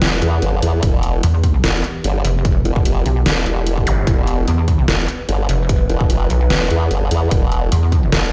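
The recording sounds as if it were played through a big sound system in a bare room, with a large studio reverb around the punchy, up-front sound. This short cut from a longer heavy wobble dubstep track feels chaotic and menacing, moving in a half-time groove with a slight swing on the sixteenths. A formant-sweep wobble bass, built from pulse and sine tones with chorus and overdrive, growls from the first moment. Beside it, a dubstep drum kit with hi-hat and a deep snare sits up front. A punchy electronic kick joins at 0.8 seconds, and a heavy, detuned pulsing pluck wobble bass, saturated and the loudest part, enters at 1.2 seconds. In the background, an evolving wavetable pad holds sustained chords, its vintage triangle tone morphing and warbling through phaser, tremolo, reverb and sidechain pumping, while a brief electronic zap flickers at 3.9 seconds.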